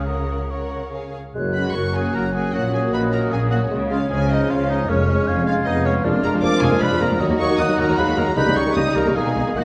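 A stormy, dramatic classical passage in three, played with rubato, opens with a dark, expressive violin section carrying the melody alongside a pure flute line, focused second violins, rich violas, smooth cellos and woody double basses, all bowed with vibrato. At 1.4 seconds a mellow clarinet, a punchy, close-miked bassoon and a tight French horn section playing sustained chords join. At 1.6 seconds a distant, roomy oboe adds another line, and from 6.0 seconds the harmony darkens into a minor key, all set in a moderate scoring-stage reverb.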